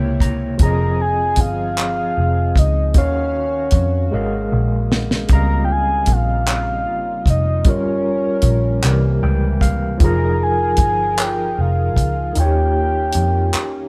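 Heard in a lightly reverberant room, this intimate, tender slow R&B passage in 6/8 at 51 BPM is cut from a longer piece and moves through rich chords such as C7b9, Fm7 and Dbmaj9#11. Up front, a dry 70s drum kit with a fat snare, tight kick, hi-hat and handclaps enters at 0.2 seconds and plays a fill around 4.1 seconds. Also up front is a dark, foam-muted picked bass, round and punchy, joined by a gritty overdriven tine electric piano shaded with medium tremolo that adds short fills. A soft, octave-layered synth lead carries the melody with chorus and vibrato over a shimmering, retro pulse-width pad in the background, and the kick drops out from 12.4 seconds.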